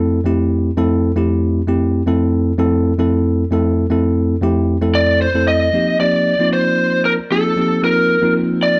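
Funky and soaring, this jazz fragment in a brisk 7/8 at 230 BPM opens on a bright, bell-like tine electric piano comping a clean Fmaj9 up front, until an overdriven lead guitar from a small cranked amp enters at 5.0 s with a picked, upper-register melody just before the harmony shifts to F9sus4 and F mixolydian at 5.7 s, all set in a moderate club reverb with a dark, warm production.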